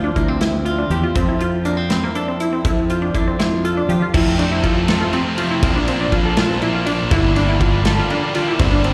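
Intricate and wistful, this math rock and midwest emo excerpt moves at 81 BPM in a straight 6/8 in F major, sounding like a live gig heard through a venue's PA. A clean, compressed twelve-string electric guitar gives sparkling accompaniment with slapback echo until 5.6 seconds, while a juicy, squelchy, resonant blip pluck with a filter sweep, chorus and slapback echo spins arpeggios over a growling, overdriven fingered bass placed up front and a punchy acoustic drum kit with a medium-tuned snare and rolled-off top. At 4.1 seconds a cranked, double-tracked stack guitar enters with an overdriven riff and slapback echo as the chords move from Fmaj7 through Bbadd9 to Gm7.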